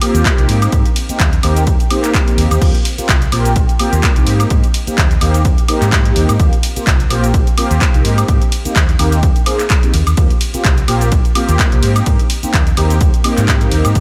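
Set in light, digital ambience, this joyful, funky slice of filtered disco house moves at 127 BPM in 4/4 with a swung 16th-note feel, cycling between Abmaj7 and Eb69. Mellow, detuned sawtooth synth brass with chorus, phaser, vibrato and a filter sweep carries the chords over a tape-warm, layered house kit of handclaps, hi-hat, shaker, woodblock, ride and crash, whose hats, cymbals and percussion pump with the sidechain. A dark, round fingered electric bass joins at 0.1 seconds, also pumping, and a dry, punchy analog kick lands at 0.3 seconds as the loudest part.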